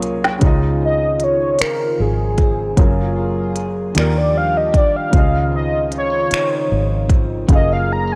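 A slow, steady six-eight groove opens this short cut from a longer R&B piece, with a brief drum fill in the first 0.4 seconds before a velvety synth lead takes a soft solo over the rest. The organic electronic drum kit sits up front with a deep kick, woody snare, smooth hi-hat and finger snaps, sounding re-recorded in a large room, and drops out at 7.7 seconds. A dark, round fingered electric bass anchors the low end, while an intimate grand piano with audible action noise and short sustain fills in the accompaniment. A slightly broken-up, compressed electric guitar plays a second line in the background, and a shimmering, airy pulse-width pad holds mellow chorused chords beneath, moving through lush major-ninth harmony. The whole piece has the sensual, tape-soaked feel of a home cassette recording with light reverb, the detuned, chorused lead sitting smoothly on top.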